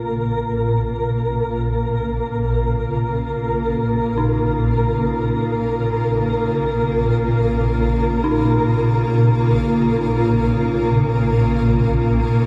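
A swarming, detuned drone sits low and up front, shaped by a filter sweep, alongside a blurred granular cloud pad fading in on sustained chords and a mellow, flickering grainy texture, before an eerie, inharmonic synth bell enters in the background at 4.2 s with chorus and a diffuse delay on its fading-in arpeggios, the whole ominous dark ambient fragment steeped in cavernous cathedral reverb.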